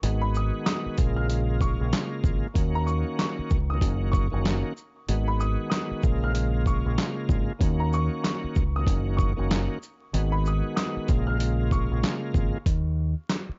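Boom-bap hip-hop with a tough, reflective mood and a swung groove, built on a gritty, overdriven sampler-style drum kit of thumpy kick, medium-tuned snare, handclaps, hi-hat and shaker, up front beside a dark, round fingered electric bass, with vinyl crackle and a dull top end over the dry mix. A bright, shouting tonewheel organ with light overdrive, key click, chorus vibrato and slow rotary speaker carries the chords until about 12.6 seconds. High above it, a woody, intimate upright piano with audible action noise plays the melody through plate reverb and tape echo in this excerpt cut from a longer piece.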